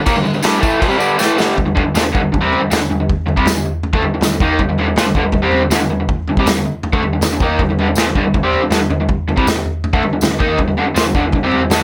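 A straight 4/4 garage rock groove drives at 160 BPM in G minor, its menacing, gritty mood set by a bright, overdriven, double-tracked electric guitar riff that sits up front from 0.0 seconds, ranging from G2 to Eb4. An acoustic vintage drum kit joins at 0.1 seconds with a punchy kick, a medium-tuned snare, toms and dark crash cymbals in a pumping small room with a rolled-off top, and throws in a fill from 1.2 to 1.6 seconds. A jingly, close tambourine rattles in the background, and the whole mix sits in a light reverb in this cut from a longer piece.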